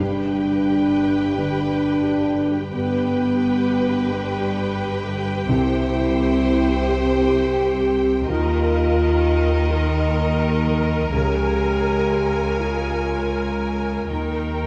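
The recording sits on a moderate scoring-stage reverb with a small-room ambience, giving this cinematic excerpt a hopeful, moving glow. At a slow, rubato 43 beats per minute in 6/8, the bowed violin section carries a smooth, close melody with vibrato, while a second violin line adds lush, expressive portamento beneath it. A dark, tight French horn section holds sustained chords, and a distant viola section sits in the background as accompaniment. Rich cellos and up-front, focused double basses anchor the bass, supported by a soft, felt-muted upright piano and a very quiet, ringing harp playing fingerpicked arpeggios, all sounding throughout the 14.7 seconds. The harmony moves from G to C at 5.5 seconds, then through Ebsus2 and Bbm7/Db before settling on Eb at 14.1 seconds.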